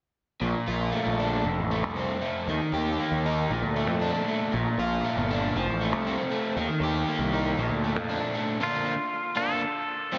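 A crunchy, double-tracked overdriven guitar and a growly fuzz bass start together at 0.4 seconds, both up front, the guitar playing a riff over a chord cycle that moves from Bbmaj7 through F and Eb. This short rock excerpt, cut from a longer piece, has an upbeat, carefree mood and a straight feel. The guitar carries a spring reverb, while the picked bass sounds bright, direct and amped, with an overdrive. The bass drops away at 8.2 seconds, and at 8.6 seconds a new section begins as a twangy, clean electric guitar takes up a compressed, picked melody set in a diffuse ambient delay. The overall mix is dreamy and soaked in a huge, lingering reverb, with a soft, rolled-off top end.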